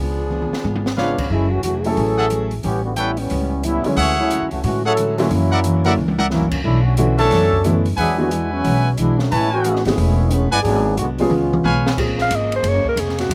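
A tight, softly attacked trombone section carries the solo from 1.3 to 12.0 seconds in this swinging, dramatic big band piece at 180 BPM in F# minor, after a brief saxophone section melody opens over a woody, thumpy upright bass, an open drum kit with a high-tuned snare, boomy kick and several fills, and a full-bodied picked jumbo acoustic guitar in the background, while present trumpet stabs and an intimate baby grand piano with audible action noise fill out the middle before mellow saxophone section chords enter at 12.0 seconds and a smooth alto saxophone solo with subtone and scooped notes joins at 12.2 seconds.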